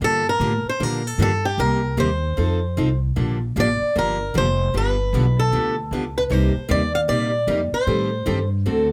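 A bright, boxy swing-style acoustic guitar carries the melody up front from the start, over a full-bodied jumbo steel-string guitar with audible finger squeak and a woody, thumpy gut-string upright bass played pizzicato, in a fiery, swinging jazz manouche groove at 153 BPM in G minor. The harmony moves from Gm9 through Cm7, F7 and Bb6 to G7, then Cm11 and Am7b5, all in light reverb. At 6.3 s a very quiet, warm parlour-sized plugged-in steel-string guitar joins the accompaniment before this short excerpt from a longer piece cuts off at 8.9 s.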